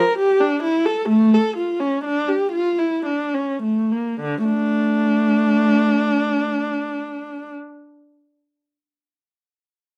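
A solo bowed viola, close and up front, carries this introspective, flowing baroque-style suite movement in D minor, its rich tone shaped by vibrato, soft attacks and expressive portamento between notes from D3 to Bb4. In a rubato 6/8 at roughly 33-49 BPM in dotted quarters, the first phrase slows down as it moves from D5 through A7, and a new section returns to D5 at 4.2 seconds. Moderate studio reverb gives the single player a gentle sense of space in this brief fragment from a longer piece.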